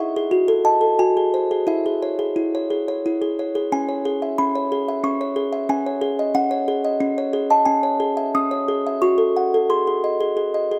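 In a straight 3/4 lilt at 90 BPM, this brief fragment of a fragile, eerie classical lullaby in C# minor is carried by a solo music box, delicate, tinkling and darkly toned, sitting up front in close, detailed sound with light reverb, its harmony drifting through diminished and dominant colours before settling on C# minor at 3.7 seconds and turning toward F# minor and G# near the close.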